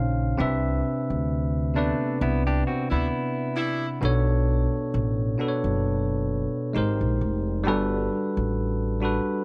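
A lightly swung 66 BPM groove in 4/4 carries this relaxed, smooth R&B and neo-soul excerpt: a bell-like, bright tine electric piano and a woody pizzicato upright bass play throughout, a clean, compressed semi-hollow electric guitar adds a second line from 1.8 to 4.0 seconds, and an edgy jazz-style saxophone section with vibrato punches in stabs from 2.9 seconds during a band accent, all over chords moving from Cmaj9 through Bm7 and G#maj9 to Gmaj9 in a dry, close 1970s-style studio sound.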